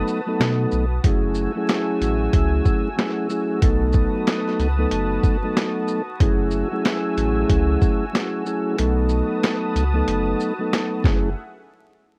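Worn, warbling old tape colours this short section cut from a longer boom-bap hip-hop track, with vinyl crackle, light reverb and a slight drift in pitch giving it a moody, dark cast. The tempo sits at 93 BPM in 4/4 with a 61% swing on the 16th notes, and the harmony moves between F#m9 and B7 in F# dorian. A soft, flute-like tonewheel organ sits up front, its slow rotary speaker and cassette-tape tone adding gentle movement, while a smooth, detuned sawtooth pad with chorus and plate reverb holds sustained chords further back. The compressed, gritty sampler-style drum kit pairs a thumpy kick and high-tuned snare with hi-hat and shaker, and a deep, round sine sub bass joins at 0.4 seconds. The opening second acts as a brief break before the groove settles in, and the kick drops out from 8.8 seconds onward.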